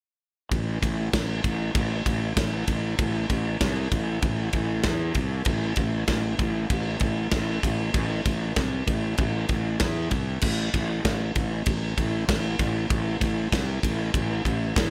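An overdriven, fuzz-soaked fingered electric bass and a modern studio drum kit open together at 0.5 seconds, setting a dark, aggressive heavy metal groove in A minor at 97 BPM in straight 4/4. The bass growls low and punchy from A1 to E2, while the acoustic kit sits up front with a tight kick, medium-tuned snare, ride and crash cymbals in a small-room sound. The dry mix carries both parts through to 14.9 seconds in this excerpt cut from a longer piece.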